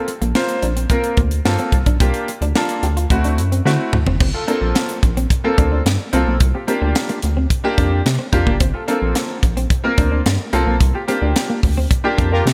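Danceable and late-night, this early-eighties boogie funk excerpt rides on a tight, dry drum kit with a high-tuned snare and gated reverb, and a rubbery, bouncy square bass with a saturated filter pluck, both up front. A clear concert grand piano with analog chorus plays rootless minor-eleventh and suspended-ninth chords, while a clean, compressed electric guitar riff with lush chorus sits in the background. A drum fill at 3.7 seconds leads into the second section, and a band accent from 10.8 seconds carries to the end, where a fat, brassy analog synth line flashes in at 12.3 seconds, all in a bright digital production with small-room ambience.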